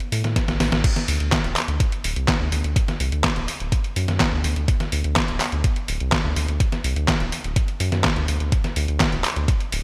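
Italo disco at 125 BPM in D mixolydian, this playful, danceable fragment of a longer piece opens with a detuned, overdriven 8-bit drum machine up front, its crash, handclaps, hi-hat and medium-tuned snare re-recorded in a small room. It is joined at 0.1 seconds by a round, deep analog bass blending sawtooth and sine with a fast attack and sustained dark tone, and at 0.4 seconds, as a drum fill begins, by a thumpy, overdriven electronic kick, all set in a lush hall reverb with bright 1980s-style digital sheen.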